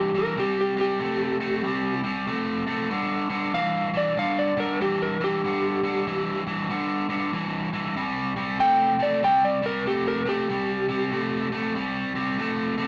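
This blues fragment, cut from a longer piece, has a soulful, gritty mood at 95 BPM in 4/4, with a swung eighth-note feel and tuning set to A4 = 442 Hz. An electric slide guitar carries the melody from 0.0 to 11.5 seconds, played with fingerpicks in the range from G4 to G5, its tone warm and slightly broken-up. Beneath it, a biting overdriven guitar sits up front with a picked riff in the low register, from G2 to A3, running through to 12.9 seconds. The harmony moves from C5 at 0.4 seconds to G5 at 2.9 seconds and back to C5 at 8.0 seconds. The rough rehearsal-room recording carries tube saturation and a wet, small-room reverb that lends the pair a close, lived-in grit.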